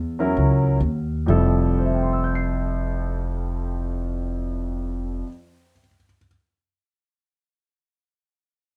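Jazz with a relaxed, swinging feel at 120 BPM in F major. It's a short cut from a longer piece that eases its tempo over the first 1.3 seconds as a Gb7 chord resolves to Fmaj7. A woody, growly pizzicato upright bass with steel strings sits up front until 5.2 seconds, and an intimate grand piano with audible action noise and long sustain carries the accompaniment from 0.2 seconds, ringing on alone to the end in light reverb.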